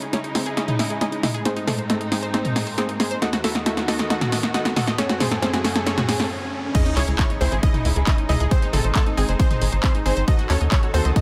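Uplifting trance at 136 BPM in C# harmonic minor, soaring and euphoric, where a lush, detuned unison pluck melody with tape echo, a round chorused analog pluck arpeggio and veiled, muted strings pump under sidechain over a punchy, overdriven analog drum machine fill and a very quiet riser and sub drop through a build-up with a filter sweep, until a brief break gives way at 6.7 s to a drop where an up-front layered kick, an airy supersaw stab second line and, from 7.0 s, a tight, dark sequencer bass drive the chords of C#madd9, G# and D#dim in light reverb.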